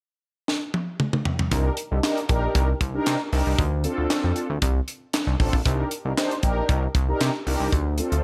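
Danceable and slick, this is a short cut from an early-eighties boogie funk track at 116 BPM in 4/4 with a straight feel, set in C dorian and tuned to A4 = 442 Hz. A tight funk drum kit opens with a fill from 0.5 seconds, bringing in kick, high-tuned snare, toms, hi-hat and handclaps with a small-room, mid-forward acoustic character and gated reverb on the drums. At 1.5 seconds the chorused synth bass and mellow synth brass enter together as the harmony moves between Cm9 and Dm7. The bass is retro and glossy, built from pulse and sawtooth waves with pulse-width modulation, a filter sweep and a fast attack, sitting up front in the low register. The synth brass holds sustained, round, dark tones of detuned sawtooth, shaped by a filter sweep and coloured with chorus and phaser. The overall sound is dry and close, with little reverb.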